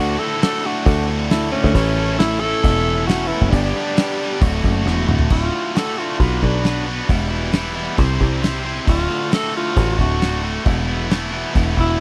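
A straight, driving 4/4 pulse at 135 BPM anchors this swaggering classic rock passage in D major, with a damped 1970s-style drum kit entering at 0.4 seconds, its tight kick, medium-tuned snare and dark cymbals sitting up front. A growly, foam-muted picked electric bass also sits up front, punchy and direct, while two bright, picked guitar riffs fill out the middle: one overdriven, the other a tighter distorted part set further back. A breathy tenor saxophone carries the melody throughout, raspy and gritty with a light vibrato and a smooth top, and a dark octave-fuzz lead guitar adds a second line in the background until 4.4 seconds. After a drum fill, the saxophone takes a solo from 5.3 seconds as the harmony moves from D, A and G into Bm, Em, C, D and a closing Esus4. The dry, close studio sound, with little reverb, gives this section of a longer piece a polished, period feel.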